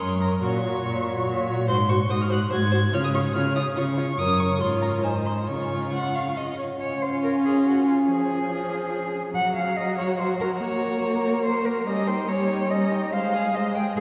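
Classical-period string quartet movement, lively and graceful, moving quickly at 143 BPM in 3/4 in Db major, cut from a longer piece with its opening section returning at 6.8 seconds. The first violin sings a warm, vibrato-laden melody high in its register while the second violin bows a focused, smooth-topped second line; the viola adds an expressive accompaniment with portamento, and the cello, placed up front, supplies a rich bass, with the viola and cello sounding louder than the two violins. All four play throughout, heard from further back in a wet cathedral space whose reverb lingers for 4.2 seconds.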